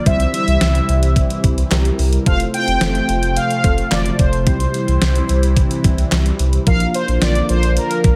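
A mellow, brassy sawtooth synth brass carries the melody with chorus, tremolo, vibrato and tape echo over round, decaying analog keys, a swirling, airy phased pad, a deep sine sub bass and a 12-bit drum machine with thumpy kick, fat snare, hi-hat and handclaps, all set in light reverb in this bright, upbeat synth-pop excerpt at 109 BPM that moves through C, F, C and Bb.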